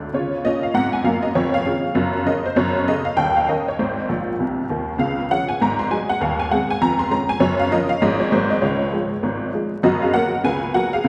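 Swinging and playful, this short stride jazz excerpt features a lone honky-tonk upright piano, detuned and jangly, sitting up front as it swings through a brisk progression built around Db, Gb and Ab chords. A quick fill at 4.1 seconds livens the phrase, and at 9.8 seconds the music shifts to a new part on an F# chord. The piano rings out in a lush concert-hall reverb, with vinyl crackle lending an old-record patina.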